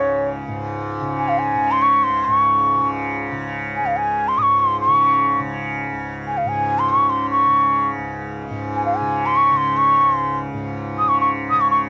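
A dry, close studio sound in a 1970s style frames this short meditative Indian classical excerpt in 3/4, which begins around 144 BPM and gradually speeds up. Up front, a breathy, mellow bansuri carries the melody with a straight tone and soft attack, its highs rolled off. Beneath it, a tanpura sits much lower in the mix, softly plucked, holding a buzzing, shimmering drone throughout for a serene mood.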